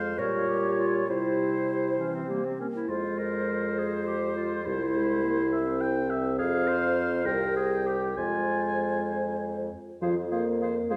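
A quick, dramatic and urgent classical-period wind quintet movement in F minor opens with all five players together at 0.0 s, moving in a rubato 6/8 at about 64-70 BPM in dotted quarters. A hollow, airy flute carries the melody from the background with tongued notes and vibrato, while a mellow oboe adds a second line above a clear clarinet and a dark, distant French horn in the accompaniment. An up-front bassoon anchors the bass as the harmony turns from Gdim/Bb through C to Fm, all set in a roomy recital-hall reverb.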